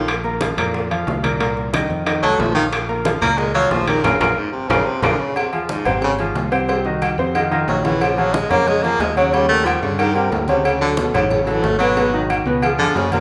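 A warm baritone saxophone, up front with vibrato and subtone, takes a jazz solo from 2.2 seconds in this driving, sultry Afro-Cuban jazz excerpt at 182 BPM in Bb minor, cut from a longer piece. A clear concert grand piano with deep bass sits up front in the accompaniment, over a bright, growly fingered electric bass. Ringing metal-shell timbales with agogo bells join the percussion, while low-tuned congas struck with hard hands, tight high-tuned bongos and cowbell, and woody claves sit in the background. A band accent and a drum fill arrive near 5 seconds, all played live in one room with a wet, large studio reverb.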